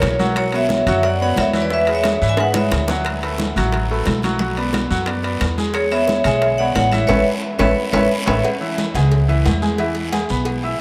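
A brisk, straight 4/4 salsa groove drives this excerpt at 178 BPM, danceable and joyful from the first beat. The upright bass sits up front, woody and thumpy, its dark gut strings played pizzicato. A bright, brilliant grand piano, also up front, carries the accompaniment through chords such as Bmadd9, E and D6. A metallic vibraphone with medium hard mallets and a medium motor vibrato takes the melody in two phrases, the second arriving at 5.7 seconds, and a band accent and drum fill lead into a new section at 8.4 seconds. In the background, high-tuned congas are struck with hard hands, ringing metal-shell timbales pair with agogo bells, tight bongos and cowbell sit very quiet, and a raspy, distant guiro scrapes along, all inside a vast, echoing cathedral reverb.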